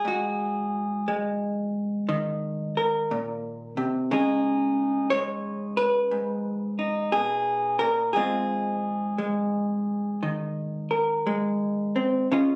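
Swung eighths at about 66% drift through a rubato 4/4 pulse near 59 BPM, giving this short solo jazz passage an unhurried, relaxed, warm feel. A vintage electric hollow-body jazz guitar carries the whole 12.6 seconds alone, picked cleanly with a dark, compressed tone and placed up front, ranging from Ab2 to Eb5. The harmony sits in Ab mixolydian, moving from Ab7sus2 to Dbsus2 at 4.1 seconds and settling on Ab69 at 8.2 seconds. The instrument is tuned slightly low, with A4 at 436 Hz. A phone captured the playing in the room, and light reverb adds a touch of space to a passage cut from a longer piece.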